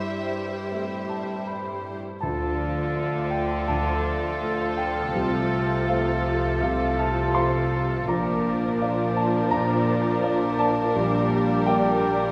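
Moving and hopeful, this cinematic passage in D minor unfolds at a rubato 82 BPM in 4/4, cut from a longer piece. A chamber violin section carries the melody with light vibrato and an intimate, sul tasto softness, while a symphonic violin section floats a pure second line behind it. Dark, woody violas add lush accompaniment, and a concert grand piano, the most present voice, supplies accompaniment with a deep bass. Rich cellos hold the bass from the start, and at 2.2 seconds a double bass section, a punchy solo oboe, a mellow background clarinet and a distant, roomy French horn section enter as the harmony moves from D minor through F/C and Bb to Gm/Bb. The whole ensemble sits in a church or concert hall with a generous 2.2-second reverb that gives it a spacious, glowing bloom.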